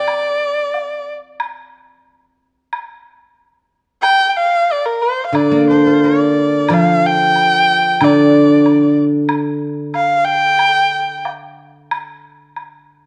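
A bowed erhu with vibrato and portamento opens this tender, wistful Chinese traditional chamber piece at 91 BPM in a rubato 2/4, a woodblock entering at 0.1 seconds, the smooth, up-front erhu returning at 4.0 seconds to sing its melody in D jue mode while a silvery, ringing steel-string zither played with fingerpicks adds accompaniment from 5.3 seconds, the whole set in a dark, warm production with moderate recital hall reverb.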